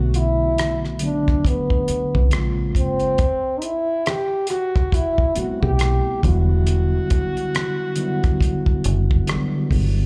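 A slow 69 BPM groove in 4/4 with a 16th-note swing sets up this sultry, soulful neo-soul and R&B excerpt in A dorian, caught live through a club's PA with the room's ambience around it and little reverb. A damped 70s acoustic kit plays hi-hat, rim click and a tight kick, sounding dry and up front with a rolled-off top. Beneath it, a deep dub fingered electric bass sits low and forward, its tone dark, round and foam-muted. A mellow tine electric piano accompanies through its built-in speakers, clean and warm, over a progression of Bm7, Bbm9, Am9 and Em9. Carrying the melody, a clear French horn plays in a classical style with a roomy, slightly distant character and a slapback echo, ending its line at 9.7 seconds.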